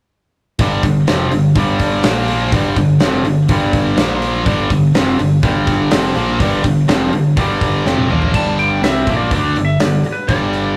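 A rough rehearsal-room recording with small-room ambience and saturation carries this powerful, swaggering hard rock cut in straight 4/4, where a bright, up-front overdriven guitar riff and a very quiet second one sit over a growling, round bass pushed into the background and a smooth big-room drum kit with a punchy kick, crash, hi-hat, toms and a medium-tuned snare, until a drum fill at 7.9 seconds leads into a new section where a dark, slightly broken-up, compressed lead guitar melody enters at 8.3 seconds.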